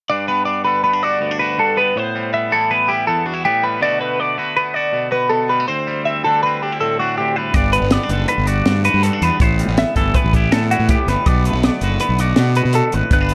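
A light reverb gives this brief math rock and midwest emo excerpt a close, airy space, and its mood is intricate and wistful, moving in an uneven count of five. From the first moment, a twelve-string electric guitar sits up front with phaser-coloured arpeggios, its compressed, chiming tone ringing above a twangy electric guitar that plays accompaniment at a lower level beneath it. The harmony drifts between jazzy ninth chords and a suspended dominant, lending the opening a suspended, searching quality. At 7.5 seconds a fuzz-laden fingered bass arrives, round and overdriven, planted forward in the mix, together with a compact cocktail drum kit. The kit sounds dry and dark, with a high-tuned snare, a punchy kick and hi-hat, filling out the passage until it breaks off at 13.3 seconds.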